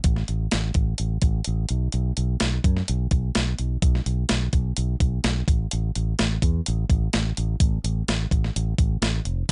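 A clean, 12-bit drum machine opens the track with a thumpy kick, a medium-tuned snare, hi-hat and crash cymbal. A fingered electric bass joins almost at once, warm, direct and amped, in a low register. This short indie rock cut feels wistful yet upbeat, moving in a straight four. Between 1.5 and 1.9 seconds the kick and snare briefly drop out before returning. The two parts sit up front in a dry, close-sounding mix with little reverb and a softened top end.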